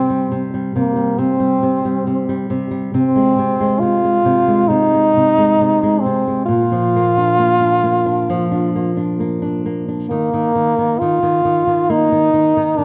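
This children's lullaby moves at a rubato 68 BPM in Eb major, with an innocent, gentle mood. A French horn with a straight mute carries the melody from the first second, its tone brilliant yet nasal, with a smooth top, vibrato and a classical solo manner, placed up front. Beneath it, an acoustic flamenco guitar plucked with the thumb supplies warm accompaniment, also close in the mix but sitting a little lower than the horn. The harmony drifts from C5 through Ab/C and Bb before settling on an Ebsus2 at 10.1 seconds, where the opening phrase begins again. A moderate recital hall reverb and a dark production give the short excerpt, cut from a longer piece, a soft, enveloping glow.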